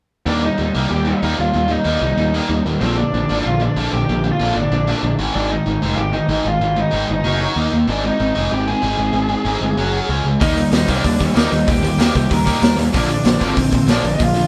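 Upbeat and energetic, this punk rock excerpt opens with a dark, lo-fi lead guitar carrying the melody over a bright, tight distorted guitar riff up front and a growly fuzz bass. At 10.4 seconds a raw garage drum kit bursts in with a punchy kick, gritty saturation and a pumping small-room sound, while a second overdriven guitar riff sits in the background. The band plays live in one room, with a moderate stone room reverb surrounding the sound.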